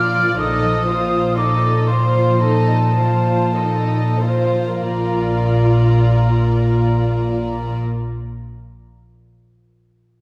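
A pure, straight-toned concert flute with a crisp attack floats high above a serene, slow classical passage in Bb major, at 45-64 BPM with a rubato feel that slows through the opening 4.8 seconds as an F7/Bb chord resolves to Bb. A soft, intimate chamber violin section carries the melody with light vibrato, and a floating symphonic violin section adds a second line over woody, dark violas, a rich cello section and a double bass section that enters at 0.4 seconds, all bowed sul tasto. A ringing fingerpicked harp plays arpeggios in the background and sounds on after the others stop, until 8.7 seconds. The whole ensemble is heard from further back in a wet scoring-stage reverb in this fragment cut from a longer piece.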